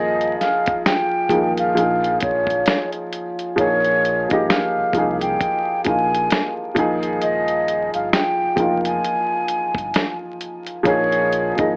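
Nostalgic and hazy, this lo-fi hip hop excerpt sets a breathy, vibrato-laden concert flute melody up front over a dark, woody upright piano with audible action noise and a slightly detuned, tape-worn character, a deep sine sub bass sitting in the background, and a gritty, compressed sampler-style drum kit with a thumpy kick, hi-hat and snare entering at 0.2 seconds, all wrapped in vinyl crackle and an AM radio tint.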